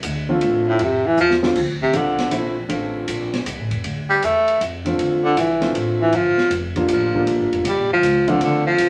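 A lilting 3/4 swing at 158 BPM in D minor drives this smoky small-group jazz excerpt, with woody, growly pizzicato upright bass and an open acoustic drum kit (high-tuned snare, boomy kick, ride, hi-hat and crash) that slips in a short fill at 1.2 seconds. Up front, a clear baritone saxophone takes the solo from 0.7 seconds, its soft-attack notes scooped and shaded with vibrato, while a warm, up-front grand piano with a short sustain comps beneath it. The harmony rests on Dm7 before moving to Gm7 at 6.1 seconds, all wrapped in a wet club reverb.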